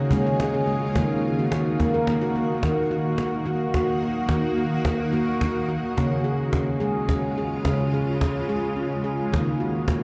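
Gentle and meditative, this short cut from a longer world piece moves in a slow 6/8 at 72 BPM in E-flat minor, tuned slightly low to A4 = 439 Hz. The handpan sits up front, its mellow, ringing stainless-steel tone struck with soft fingertips as it spins arpeggios through delay and shimmer reverb. Beneath it, a granular cloud pad holds sustained chords, a blurred, evolving haze of detuned sine and sawtooth voices with a slow attack, long release and a bright shimmer on top of its own built-in reverb. A woody acoustic cajon joins at 0.1 seconds, its faint snares carrying the feel of a live room. The harmony rocks between D-flat and E-flat minor, and the opening passage gives way to a longer second section at 2.6 seconds. Everything sits in a wet cathedral reverb with a 6.1-second tail, as though the performance fills a vast, echoing hall.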